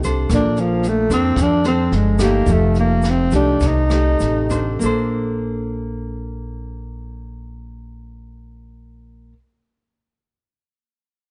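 A relaxed, breezy bossa nova in straight 4/4 drifts between 96 and 114 BPM and slows during the first 4.8 seconds, where a growling, breathy tenor saxophone solo with raspy subtone and scooped notes rides over fingerpicked nylon-string guitar, woody pizzicato upright bass, a distant, roomy brush kit with boomy kick and rim click, and a grainy shaker in the background, moving from Bbmaj9 to F9 before the drums drop out at 4.6 seconds and guitar and bass carry the second part on Bbmaj9 in a dark production with light reverb.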